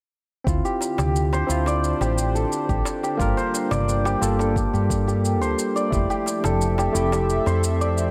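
Organic downtempo at 88 BPM in a warm, meditative mood, this excerpt from a longer piece moves through Dm7, Gm7 and Fmaj7 over a round, woody fretless bass sitting up front. A shimmering, hammered santur plays ringing arpeggios with delay, while a barky tine electric piano and an airy, breathy pad with chorus fill in the chords, both pumping from sidechain. A deep, overdriven electronic kick and overdriven shaker anchor the groove, the kick dropping out at 6.1 seconds, as a crisp metal-shell darbuka sits close and dry in the background under light digital reverb.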